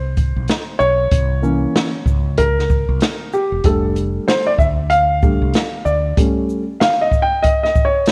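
Mellow and cool, this short jazz-hop cut from a longer hip hop piece moves at 95 BPM in 4/4 with a 16th-note swing. A dark concert grand piano carries the lead from 0.0 to 8.1 seconds, its smooth, vintage tone full of deep bass and short sustain, moving through C7b9, F69 and G7(b5, no3) chords. Underneath, a round, direct fretless electric bass holds the low end until 6.1 seconds. An open jazz drum kit enters at 0.2 seconds, airy and polished, with a boomy kick, medium-tuned snare, hi-hat and shaker. Light reverb and a small room ambience frame the mix, while a worn cassette-tape character adds warbly pitch drift.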